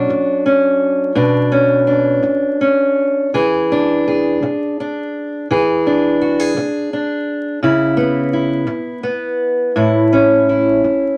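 Warm and nostalgic, this brief folk passage is taken from a longer piece and features a solo steel-string acoustic guitar, fingerpicked and placed up front. It moves in a lilting 6/8 with a loose rubato feel, and the instrument is tuned slightly below standard concert pitch. The guitar spans from A2 to G#4 and plays throughout the full 11.2 seconds, carrying a single section. Its harmony drifts from Bmadd9 to E7, then to C#m7 at 7.6 seconds before settling on A. A small, reverberant room adds a soft halo to the guitar, and a vinyl crackle gives the recording an aged, homespun character.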